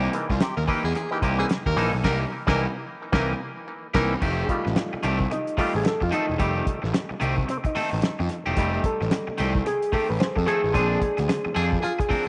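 Over a swung sixteenth-note funk groove in 4/4, this strutting, energetic excerpt sets a cloth-damped, thuddy drum kit with a fat snare and dark cymbals under a fuzzy, up-front picked bass, a twangy, slightly broken-up electric guitar with spring reverb playing accompaniment, and a hollow, nasal auto-wah clav, overdriven and echoed, that stabs from the start and takes a solo at 4.2 s, while a breathy, whispered tenor saxophone carries a second line until 4.1 s and returns briefly near the end, all inside a moderate echo chamber.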